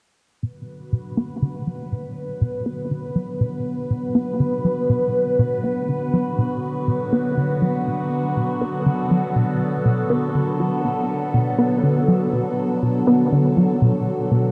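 A cassette-tape haze and a huge ambient reverb, with a 7.8 s decay, surround this cosmic, hypnotic ambient excerpt cut from a longer piece. It moves at 121 BPM in a straight 4/4 and stays in B minor, resting on a single Bm chord. Up front, a phased analog pad built from detuned sawtooth waves holds sustained chords between D3 and B4, its slow attack and phaser and chorus giving it a swirling, evolving quality. Beneath it, a plucky analog bass plays a punchy, funky riff from B2 to B3, mixing sawtooth and pulse waves with a fast attack, a dark decaying tone and a moving notch. A filter sweep runs across the bass, which carries subtle chorus and tape echo. Both parts sound together from 0.4 to 14.5 seconds.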